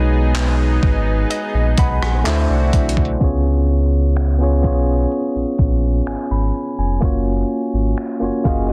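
Contemporary R&B at a slow 63 BPM in 4/4, tender and romantic, with a clean tine electric piano comping through chords like B6, D9, C#7 and F#maj7 over a deep, full sine sub bass with an octave. Moments in, a crisp 8-bit drum machine joins with a thumpy kick, snaps, handclaps, hi-hat and rim clicks, roughened by overdrive and vintage 12-bit sampler grit. A thick, detuned sawtooth pad with chorus holds chords until 3.2 s, when a filter sweep begins. Earlier, a very quiet, glassy wavetable pluck warbles in at 1.3 s, and near the end a woody, boxy acoustic guitar on old strings picks arpeggios at 8.4 s, all within light reverb and a dense, heavily limited mix.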